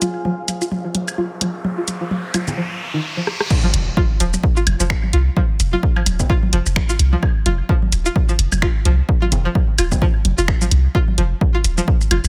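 Clinical and sparse, this minimal techno excerpt rides a swung 4/4 groove. A twangy, bright, string-like resonator pluck plays the riff with chorus, digital delay and sidechain pumping, over a deep sine sub bass with a pitch-drop attack that sits up front and pumps as well. At the start, a flickering granular texture and a warbling, lo-fi, nostalgic pad hover in the background until 2.6 s. An electronic riser builds from 0.8 s, and a drum fill leads into the drop at 3.5 s, where an impact lands and a punchy, dry analog kick enters up front. Throughout, an analog drum machine supplies hi-hat, shaker, finger snaps, rim click and crash cymbal, while electronic toms, woodblock and congas carry dub echo and a tape-warm colour from a large room.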